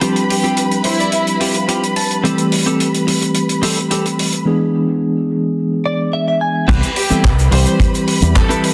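A straight 4/4 groove at 108 BPM drives this feel-good, groovy nu-disco piece in C major, with a damped, dry 70s drum kit of hi-hat, shaker, handclaps and crash cymbal set in studio reverb. A tine electric piano sits up front with medium tremolo through a combo amp, pumping with sidechain compression and trailed by tape echo. Above it, a symphonic string section holds lush, bowed chords with vibrato and portamento, roughened by vintage 12-bit sampler grit and also pumping. A clean, picked electric guitar, recorded direct and compressed, plays a riff and fills coloured by chorus, a low-pass filter and tape echo, while a studio violin section adds a smooth, even melody in short phrases, likewise echoed. The chords move from G7sus4 through Am7 and E7 before a drop at 6.7 s lands on Cmaj7, bringing in a tight acoustic kick and a bright, forward fingered bass with an envelope filter and tube saturation, all inside a dense, heavily limited master with moderate plate reverb.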